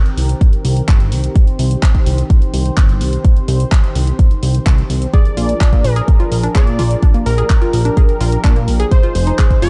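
A lush, airy detuned pad opens this bittersweet, expansive progressive house excerpt in C minor at 127 BPM, its sustained chorused chords pumping under a filter sweep as tape-tinged house handclaps and hi-hats, a fat, mellow analog bass and a punchy, up-front kick arrive, before a catchy plucky unison lead and glassy, crystalline wavetable arpeggios with delay both enter at 5.1 seconds over a Cm7 to Bb7 to Fm7 progression, all set in a dark, warm digital ambience.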